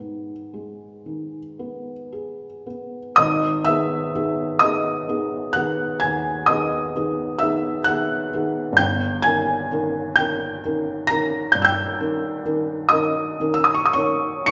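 A romantic classical nocturne for solo piano, this short passage is cut from a longer piece and carries a yearning, wistful mood in G# minor. It moves very slowly, around 36-45 BPM counted in dotted quarters, in 12/8 shaped by free rubato. The only voice is a felt-muted upright piano, heard from 0.0 to 14.5 s across a range from G1 to C#7, and its tone is soft, mellow and intimate, placed up front with the mechanical action clearly audible beneath the notes. The harmony rests on G#m before shifting to D#7/G at 8.8 s. A wet recital hall reverb surrounds the piano, giving the close, natural sound the lingering air of a church or concert hall.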